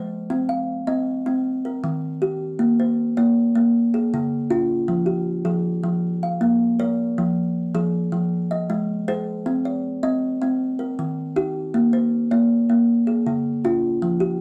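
Set in a rolling 12/8 at 105 beats per minute on the dotted quarter, this short cut from a longer southern African traditional piece moves with a straight pulse. A lone kalimba carries everything, its thumb-plucked tines sounding woody and ringing over a hollow box, placed up front with an airy halo from a moderate studio reverb. The mood is rippling and warm, rooted in a Bb equiheptatonic tuning set slightly above standard pitch, and the instrument ranges from a low Db3 pitched 43 cents sharp up to F5. A brief opening gives way at 2.6 seconds to a longer passage that cycles through Bbm, Db, Fm and Ab before returning to the opening's Cm and Eb colours. The production is dark and warm, lending the lone instrument an intimate, enclosed glow through to 14.4 seconds.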